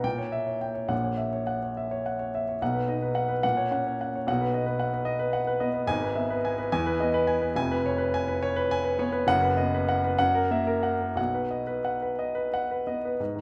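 In a flexible, rubato 6/8 that drifts between 58 and 77 BPM on the dotted quarter, this romantic character piece for solo piano unfolds in B major with a hopeful, lyrical mood. The grand piano sounds intimate and natural, placed up front with its action noise audible, and ranges from a deep E#1 up to G#5 while a wet recital hall reverb surrounds it. Cut from a longer piece, the passage opens on an A#dim7 and moves through F#7/A#, E/G# and Emaj7 before settling on B at 11.2 seconds.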